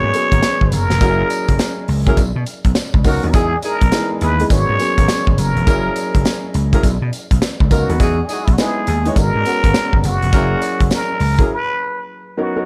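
A plunger-muted trumpet, an open-sounding baby grand piano and a punchy, amped vintage slap bass start together in this flirty, upbeat new jack swing excerpt in B major, moving at 103 BPM with a swung sixteenth-note feel. The trumpet carries the melody up front, raspy and growling with wah-wah colour, scooped notes, light vibrato and a touch of digital delay, while the piano fills out a looping progression of G#m11, F#9, Bmaj9 and Emaj7. An acoustic studio kit comes in almost at once, bringing a punchy kick, a medium-tuned snare, hi-hat and tambourine with a rolled-off top. A mellow horn section adds smooth, jazz-style stabs doubled in octaves, and a very quiet, metallic cowbell sounds distant, as if from a large room. At 11.5 s the groove falls into a break on Bmaj9, leaving the trumpet and piano to ring out in a small room's ambience until the clip ends at 12.7 s.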